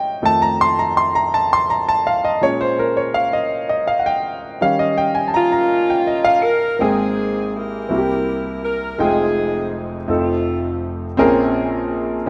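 Jubilant and soulful, this slow gospel excerpt in 6/8 at 55 BPM opens with a clear, intimate concert grand piano up front, its deep bass, short sustain and audible action noise carrying extended chords such as F7, Bbm7 and Abmaj9, before a mellow, tight saxophone section with light vibrato and a smooth top enters at 5.4 seconds to carry a jazz-style melody until 11.2 seconds, all set in a lush hall reverb within a rough home-demo mix.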